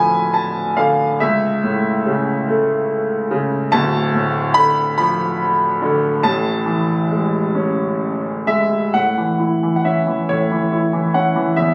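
Caught on a phone in the room, this short passage from a longer classical piece sits in a moderate recital-hall reverb, with a clear concert grand placed up front and a deep bass that reaches down to D1 while its upper notes reach B5. Played solo in 6/8 at a slow, rubato 42-49 BPM in A major, the lyrical music feels calm and warm. It moves through Dm, A/C#, Dm6 and Amaj7 before settling on A at 8.9 s as a new section begins.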